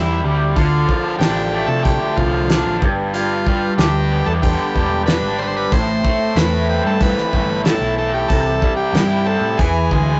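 Trippy and dark, this excerpt of psychedelic rock moves at 93 BPM in a straight 4/4, centred on A minor as the chords pass from C through Dm, G and Am before landing on E near the end. A raw garage guitar sits up front with a bright, overdriven, double-tracked riff, its tone pulsing with harmonic tremolo. Beneath it, a hollow-body short-scale electric bass gives a dark, round, picked low end, while a vintage combo organ carries the buzzy, clean melody through spring reverb. A very quiet hand-pumped harmonium breathes reedy sustained chords underneath. The cloth-damped drum kit enters at 0.6 seconds, thuddy and up front, with a fat snare, tight kick, hi-hat and a rolled-off top, and the whole take has the rough, tube-saturated feel of a rehearsal room with light reverb and a dulled upper end.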